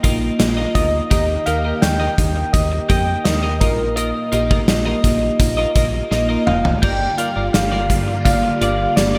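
This 1980s-style pop excerpt feels romantic and uplifting, with a gated drum kit up front, a round FM bass, glassy digital keys, and a bright, clean twelve-string electric guitar riff soaked in lush chorus and delay, while a gentle, keys-like synth lead with vibrato carries the melody from 0.8 seconds and a swirling, phased string machine slips in behind at 7.0 seconds after a drum fill, all set in a lush hall reverb with bright digital polish.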